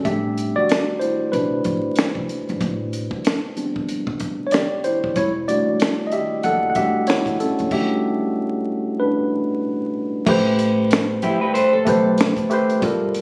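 A worn, slightly out-of-tune tine electric piano opens this smooth, introspective neo-soul R&B excerpt at 94 BPM with a swung 16th feel, taking the lead over Am11 and Em11. A woody pizzicato upright bass and a dark, compact cocktail kit with finger snaps, a high-tuned snare and a punchy kick play along, and a stop arrives at 7.7 seconds. Once the harmony has moved to Am9, a slightly broken-up, lo-fi electric guitar through a small old amp adds a brief picked line with spring reverb at 11.2 seconds, all heard as if captured on a phone in the room beneath vinyl crackle.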